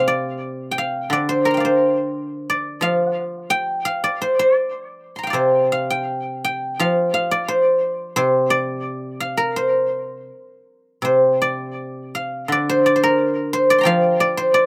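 Recorded outdoors with almost dry air around it, this short excerpt places a lone guzheng up front, touched by a slapback echo. It is Chinese traditional solo plucked-string music in a pastoral, flowing mood, moving freely in rubato at roughly 79-90 BPM in 2/4, in the C shang mode with the instrument tuned to A4 = 439 Hz. Played with fingerpicks, the guzheng sounds acoustic, ringing and silvery, ranging from C3 up to C6. The opening passage runs to 11.0 seconds before a new section takes over and carries through to the cut at 14.7 seconds.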